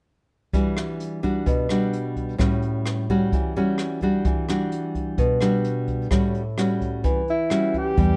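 A straight 4/4 bossa nova groove opens this relaxed, sophisticated fragment of a longer piece, with a dark brush kit of hi-hat, boomy kick and rim click beneath an up-front, fingerpicked nylon-string guitar whose classical tone and audible finger squeak trace Em9 and A6 chords. A mellow, breathy alto saxophone enters at 7.3 seconds in a jazz solo style, with vibrato, scooped notes and a distant plate-reverb sheen. A round, dark fingered electric bass appears only at 8.0 seconds, all captured by close, detailed microphones in a lightly reverberant room.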